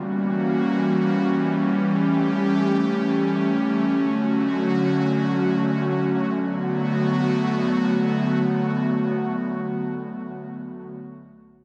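Soulful and late-night, this short amapiano fragment drifts in free time in B minor, cut from a longer piece. A single breathy pad carries it all the way through, holding sustained chords between D3 and G4 with a slow attack and sitting up front in the mix. Its tone blends a detuned sawtooth with a triangle and a noise layer, and chorus gives it a warbling, vintage softness. The harmony moves from F#7b9 to A7 and Dmaj7 before a new passage settles on Bm7 at 6.4 seconds. A moderate studio reverb surrounds the pad, while heavy compression lends the whole fragment a radio-like sound.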